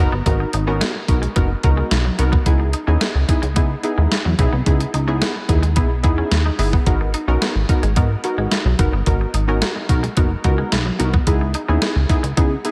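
Early-eighties boogie funk at 109 BPM in G# minor, this slick, funky excerpt moves between G#m9 and C#m9 over a steady, straight 4/4 groove. A punchy, up-front analog bass with a sawtooth filter pluck and a moving notch sits alongside a clean 12-bit drum machine with a thumpy kick and medium-tuned snare, which enters at 0.3 seconds, while a detuned, mellow polysynth comp with chorus fills out the accompaniment. Set further back, a twangy, slightly broken-up electric guitar plays a picked riff with subtle chorus and slapback echo, all inside a light digital ambience.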